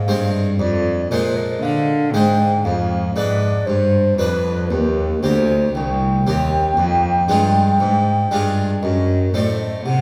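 A mellow wooden baroque flute carries the melody from G4 to G5 with vibrato and tongued notes, in a flowing, serene baroque-style sonata movement at 58 BPM in 4/4, cut from a longer piece. A rich, reedy cello with a gut-string tone and light vibrato bows the bass up front, while a dry, close-miked Flemish-style harpsichord with two sets of strings plucks a full accompaniment through minor and diminished harmonies from Fm to F#dim. The ensemble is heard from further back in a recital hall with a reverb of 1.8 seconds, tuned to A4 = 442 Hz.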